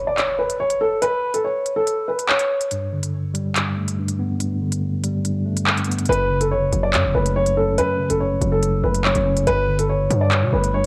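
A dark, intimate baby grand piano opens this tense drill excerpt beside a faint electronic impact, its muffled melody carrying audible action noise, while an up-front drum kit with handclaps and crisp hi-hats sets a half-time feel. At 2.7 seconds a mellow tine electric piano takes up the accompaniment, clean yet filtered and tape-worn, heard through its built-in speakers, and at 6.1 seconds the grand returns as a saturated, aggressive 808-style bass with a noise layer drops in underneath. A moderate spring reverb and home cassette recording give the piece a homemade, shadowy feel.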